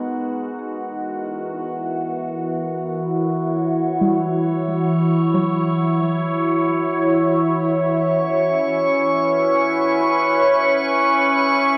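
In free time, this melancholic yet serene ambient excerpt opens with an evolving wavetable pad fading in up front, its detuned, warbling chords colored by phaser and reverb, while a very quiet, soft, round pluck traces arpeggios until 9.3 s. From 8.2 s a glassy texture of drifting overtones with chorus floats high above as the harmony moves from G#m7 through Em6 to a rootless Amaj7. A long plate reverb soaks the mix in a dreamy haze.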